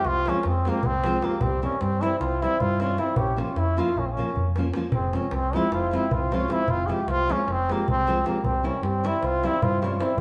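Balkan folk in a restless, virtuosic wedding-band style and a straight 9/8, with a nasal, brilliant trombone under a straight mute carrying the melody up front with light vibrato, a reedy, boxy accordion playing a second line in the background, a fingerpicked nylon-string guitar with audible finger squeak, a round, dark hollow-body electric bass and a clay-shell darbuka that adds a fill at 4.0 seconds, all heard live in a stone room.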